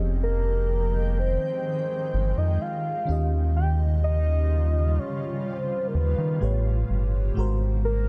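A slow, straight 4/4 pulse at 63 BPM carries this longing, moody R&B excerpt in F minor, where a deep, round analog bass sits up front beneath a lush, dreamy FM electric piano with a soft pad layer and chorus and phaser, a cloudy, evolving granular cloud pad holding sustained chords in its own reverb, and a full-bodied, octave-layered synth lead with vibrato that enters at 0.2 seconds as the chords move from Fm9 through Eb9 to A9 and Ab9.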